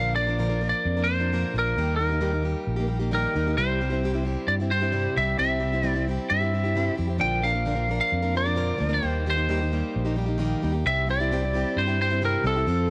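A dusty home cassette recording with light reverb and studio ambience frames this reflective folk rock and heartland rock excerpt at 132 BPM in 4/4, where a dark, slightly broken-up lead guitar carries the melody over a picked, plugged-in steel-string acoustic with audible finger squeak and a bright, growly fingered electric bass, all three up front as the chords cycle through Bb, Eb and C.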